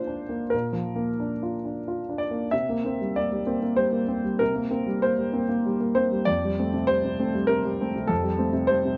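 A warm, up-front grand piano plays alone in this intimate, melancholic neoclassical minimalist excerpt, moving in a rubato 3/4 at around 88-100 BPM through Bb, C7 and Fadd9 between F2 and E5, its short sustain and audible action noise set in light reverb with the warbling pitch drift of worn cassette tape.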